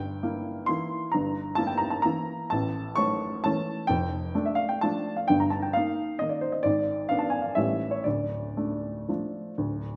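A lilting waltz in three, pushed and pulled by a free rubato, carries this short classical passage cut from a longer piece. The mood is elegant and wistful, with a solo upright piano playing throughout and ranging from deep bass notes up into its bright upper register. Its tone is woody and present, placed up front with a short sustain that keeps each note distinct. A wet recital hall reverb surrounds the instrument, giving the room a gentle tail of about 1.5 seconds. The harmony drifts through diminished and altered chords before an A7 at 7.6 s resolves to D minor at 8.1 s, closing the phrase with a graceful, melancholy sense of arrival.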